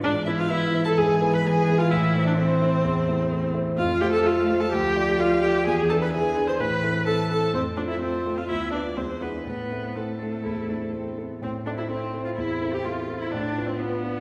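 Cheerful and spirited, this quick classical-period movement for piano quartet in A minor moves at 127 BPM in a straight 4/4, with a single violin carrying the melody in a smooth, even line with vibrato. Beneath it, the cello's expressive second line with vibrato and portamento sits at a distance, while the viola's bowed accompaniment, equally expressive, stands up front beside an intimate concert grand piano whose deep bass and audible action noise come through naturally. A wet scoring-stage reverb places the quartet further back in the room.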